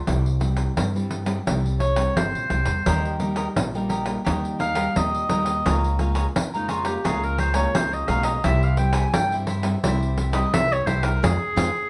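Bittersweet and yearning, this samba and choro excerpt features a bright, vintage-toned clarinet soloing up front in a soft-attacked classical style, over fingerpicked nylon-string guitar with a full-bodied tone, a growly, woody pizzicato upright bass and a jingly pandeiro played with hard hands. A crisp, picked cavaquinho joins at 2.9 seconds, and the band lands a shared accent at 11.2 seconds. The group plays live in one room with a moderate large-studio reverb, moving from C through Eb and Bbm7/Db before returning to C and closing on Fm.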